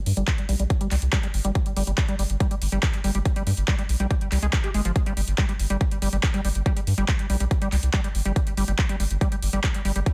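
A round, deep analog bass sits up front in this hypnotic, alien psychedelic trance excerpt, joined by a punchy, overdriven electronic kick, a big-room dance kit of handclaps and metallic hi-hats with overdrive and small room ambience, and a squelchy, resonant square-wave acid riff with a filter sweep, chorus, delay and sidechain pumping, in a dense, heavily limited master with little reverb.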